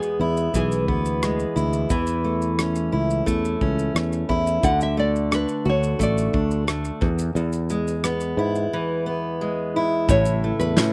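Acoustic pop with a carefree, easy-going feel, built on a fingerpicked nylon-string guitar melody over a steel-string acoustic guitar with slapback echo, a growly fretless bass, and an airy country drum kit with punchy kick, rim click and shaker, while a very quiet tonewheel organ with slow rotary shimmer slips in at 10.1 seconds just before a crisp, vintage handclap at the very end of this excerpt.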